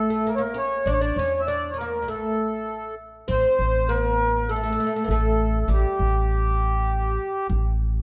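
A mellow, reedy accordion carries the melody up front, its slow-beating tone chamber sound giving this short Arabic maqam ensemble piece in A maqam hijaz a longing, hypnotic pull. Beneath it, a bright, woody oud plucked with a plectrum plays a second line in a lower register, its fretless double strings adding an acoustic shimmer at a softer level. An up-front upright bass, played pizzicato on gut strings, supplies a dark, thumpy foundation and continues until 8.0 seconds, after the accordion and oud stop at 7.5 seconds. The music moves at a steady 100 BPM in a straight 4/4, shifting into a new section at 3.3 seconds. A moderate recital hall reverb and a dark, warm production give the trio a warm sound, and the piece is cut from a longer work.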